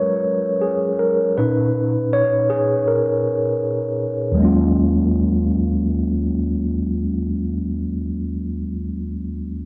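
A mellow tine electric piano sits up front in this hazy, melancholic hip hop excerpt at 80 BPM in Eb minor, playing alone for the first 4.4 seconds and moving through lush Gbmaj9 and Bmaj7 chords before settling on Ebm11. Its clean tone comes through built-in speakers with cassette tape coloring, while a moderate echo chamber reverb lends the piece a roomy, nostalgic glow over a swung 4/4 feel. The piano accompanies until 9.7 seconds, the whole clip cut from a longer piece.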